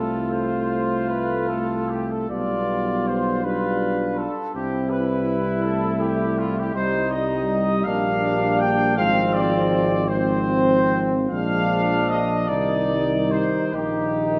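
A wet concert-hall reverb with a 2.3-second tail surrounds this serene, lyrical excerpt of a hymn-like classical piece for brass band, moving in a slow, rubato 6/8 at about 47-55 BPM in C major. A dark trumpet section with a soft attack carries the melody up front, while a warm flugelhorn with light vibrato sings a second line beneath it, both sounding distant and roomy. In the background, trombone and mellow euphonium, each with light vibrato, fill out the accompaniment over a smooth-topped tuba bass, as the harmony drifts from F/C and G7/B to C before shading into Cm, Fm/Ab and Bb.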